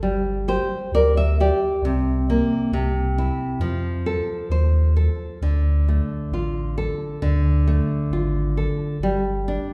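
A rubato pulse at 67 BPM in 2/4 carries this passionate, mournful fado-style ballad, cut from a longer piece, which moves from F major into D minor at 5.4 s. An up-front, full-bodied nylon-string guitar is fingerpicked with audible finger squeak, opening with a fill over the first 1.8 seconds, while a smooth, dark pure sine sub bass sustains beneath it. A wet recital hall reverb places the listener further back in the room.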